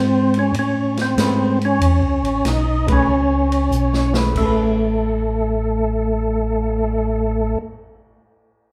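A swinging 4/4 groove at 94 BPM in A major drives this bluesy soul jazz organ trio, cut from a longer piece and opening on an Amaj9 chord. A thick, lightly overdriven tonewheel organ carries the melody with percussive third-harmonic attack, key click, chorus vibrato and a slow rotary speaker, while a mellow, round second organ voice plays the bass line through its own slow rotary. An acoustic jazz kit with dark cymbals, a medium-tuned snare and a boomy kick sits beneath, joined at 1.2 s by a clean, picked hollow-body guitar comping; the band hits an accent at 2.8 s and the drums play a fill from 3.7 s, all heard live in one room under a wet, large studio reverb.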